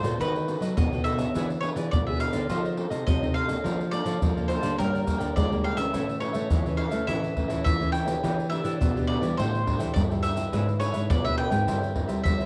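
A straight 4/4 groove at 104 BPM from maracas, pandeiro and a tight surdo played with soft hands carries this yearning, bittersweet samba-choro fragment of 12.5 seconds, where a bright bowl-back mandolin sings the melody in doubled strings through plate reverb, a crisp cavaquinho picks accompaniment in the background beside a fingerpicked classical nylon-string guitar with fresh strings and audible finger squeak, and a second fingerpicked nylon-string guitar holds the bass line in the background, all under light reverb and the worn, warbling pitch drift of old cassette tape.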